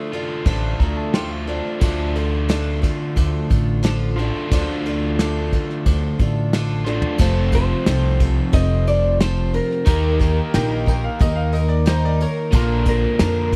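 Dusty and wistful, this folk rock and heartland rock piece moves at a steady 90 BPM in a straight 4/4 over Dm, F, Eb and Bb, with a shimmering, octave-doubled twelve-string acoustic guitar, a crunchy double-tracked overdriven guitar riff and a faint, reedy electric piano that plays a fill near the start. Upright bass and a soft brush drum kit sit up front from 0.5 seconds, with the woody pizzicato bass anchoring the low end and the drums adding a fill before the change at 7.2 seconds. An electric guitar through a small old amp enters at 7.5 seconds with a slightly broken-up, compressed melody carrying a warbly pitch drift, and a clear upright piano adds a brief second line, all in a dry, close 1970s-style studio sound with small room ambience.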